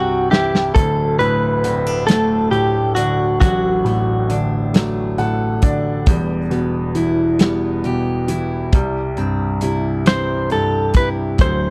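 Opening on a drum fill and a clear, polished grand piano fill, this melancholic, dramatic six-eight pop ballad sets a clean, compressed electric guitar melody, recorded direct and up front, that falls away at 4.4 seconds and returns at 10.1 seconds, over present piano accompaniment that fills again in the gap, bright, full-bodied fingerpicked arpeggios with finger squeak from a jumbo steel-string acoustic guitar, and a loose indie kit of hi-hat, tight kick and medium-tuned snare with a small-room, rolled-off top, in a dry, close 1970s-style studio recording as the chords move from C to D, Em and back to C.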